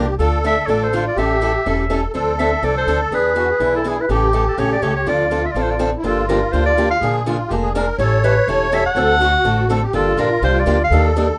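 Virtuosic and fiery, this brief cut of acoustic string swing in the jazz manouche style puts a clear clarinet with light vibrato and a soft attack up front on the melody, joined by a reedy, shimmering musette accordion on a smooth second line, a bright, boxy picked archtop guitar with audible finger squeak, and a woody, thumpy pizzicato upright bass on gut strings, set in a moderate studio reverb, with a second section arriving at 6.0 s.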